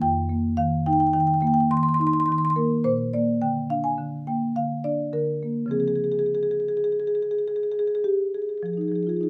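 A solo marimba played with soft mallets carries this short contemporary classical excerpt, its padauk bars giving a woody, mellow, round tone that sits up front in the sound. The piece moves at 105 BPM in 5/4 with a straight feel, set in F minor, and the mood is flowing and hypnotic. The marimba covers a broad span from F2 up to C6 across its 9.3 seconds, cut from a longer work. The harmony passes from F9sus4 to Bb, then to Dbmaj7 at 5.7 seconds, settling on Fm7 at 8.6 seconds. A light reverb surrounds the instrument, lending the sound a touch of space.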